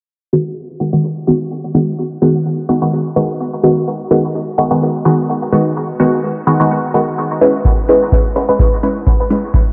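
A filtered dub chord stab leads this nocturnal, deep dub techno excerpt, its muted, detuned sawtooth tone sitting up front with a fast attack and short decay, treated with chorus, phaser, sidechain pumping and dub echo while a filter sweep runs across the whole passage from 0.1 to 9.7 seconds. The piece moves at 127 BPM in 4/4 with a light 16th-note swing, holding on a single G#m7 chord in G# minor. A very quiet electronic hi-hat with a metallic, tape-warm analog character ticks beneath the stabs from 0.3 seconds. An analog electronic kick drum, deep and up front with the same tape coloring, only arrives at 7.7 seconds, late in this fragment of a longer piece. The hi-hat and kick sound re-recorded in a large room, and a huge ambient reverb with a 5.2-second tail plus a low-pass filter give the mix its murky, cavernous depth.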